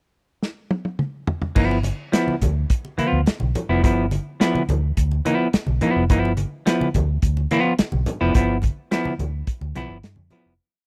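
A dry, close 1970s-style studio sound frames this short, strutting funk piece in G mixolydian at 106 BPM, which opens with a pickup bar where the small-room soul drum kit plays a fill from 0.4 seconds. At 1.6 seconds the breakdown settles on a G6 chord: the kit lays down a heavy on-the-one beat with a punchy kick and dark cymbals, the foam-muted fingered bass plays a round, syncopated riff anchored on the downbeat with muted ghost notes, and the clean hollow-body electric guitar sits up front with clipped chords. Low-tuned, damped congas sit further back with a bright, saturated, syncopated groove through the fade-out that begins at 8.4 seconds.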